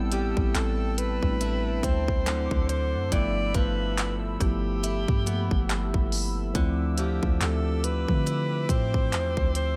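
A mellow tine electric piano, a hollow, flute-like pad with chorus sitting in the background, a bright, boxy picked acoustic guitar with digital delay and a round, dark 808-style bass open this late-night, moody contemporary R&B excerpt with a swung sixteenth-note feel. At 0.1 seconds a breathy alto saxophone with vibrato and digital delay takes the solo melody, while an up-front trap drum kit adds a hard-clipped kick, crisp hi-hats, handclaps and rim clicks. The chords move from Am7 through D7 and G13 to Dm9, set in a digital ambience.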